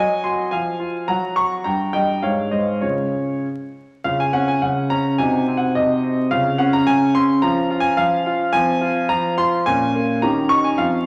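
A warm grand piano plays alone, present and up front with long sustain, carrying a graceful, playful classical-period sonatina in Db major at 106 BPM in 2/4, shaped with rubato and tuned slightly low to A4 = 437 Hz. Its opening phrase moves from Ab7/Gb through Gb, Eb/G and Ab to settle on Db, then returns at 4.0 seconds and wanders through Cdim, Fm and Bbm7 before ending on an unresolved Eb7 as this 11.1-second fragment breaks off. A wet recital hall reverb surrounds the instrument, and a bed of vinyl crackle lends an aged, intimate patina.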